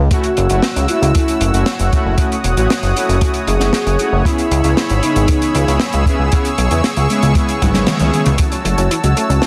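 A fat, nasal analog bass sits up front in this moody, nostalgic synthwave excerpt at 116 BPM in F# dorian, moving from F#m7 to C#m7 under a smooth, dark portamento lead with vibrato, chorus and tape echo. A soft supersaw holds evolving sustained chords with sidechain pumping, while bold, brassy analog synth brass stabs add chorus and tape echo over a boomy acoustic kick and an open jazz drum kit with a medium-tuned snare and a rolled-off top in a small room. A drum fill starts at 7.6 s, and at 8.4 s the harmony returns to F#m7 as a round, bright analog pluck enters in the background with arpeggios, all within a dense, heavily limited master.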